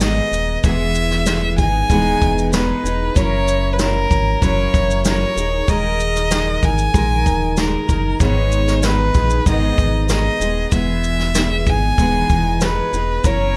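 A rich, smooth bowed violin with vibrato carries the wistful melody up front, over warm fingerpicked steel-string acoustic guitar that is double-tracked, a deep sine-like sub bass with octave, and a distant, roomy brush drum kit with punchy kick, snare and shaker, all moving through G#m, Emaj7, F#7 and D#sus4 in this reflective acoustic pop excerpt cut from a longer piece, bathed in light reverb.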